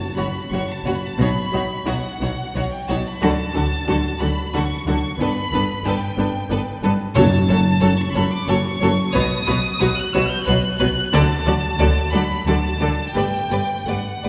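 Rubato and in 3/4, this moving, longing cinematic excerpt for orchestra opens on a timpani stroke, which returns in the background at 7.2 seconds. An intimate, close chamber violin section carries the high melody with light vibrato and a soft attack, over a clear, floating second violin line and dark, woody, lush violas, all played sul tasto. Distant, pure cellos and double basses anchor the bass as the cut moves through F#m, Badd9, D and Gadd9 in a church-like hall's reverberant wash.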